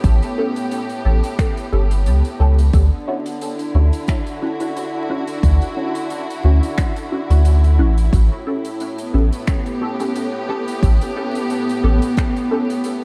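A round, up-front dub sub bass anchors this peaceful, hazy ambient dub fragment at 89 BPM in A mixolydian, with a deep, layered electronic kick beside it and a faint soft-mallet kit adding finger snaps and hi-hat with a light sixteenth-note swing. A lush, bowed string section holds smooth, vibrato-rich chords moving from A7 to Dmaj9 and back, while a muted, detuned chord stab enters at 0.4 s with a plucky filter, phaser, ensemble chorus, gritty 12-bit sampler texture and dub echo. The dark production sits in a small room ambience dusted with vinyl crackle.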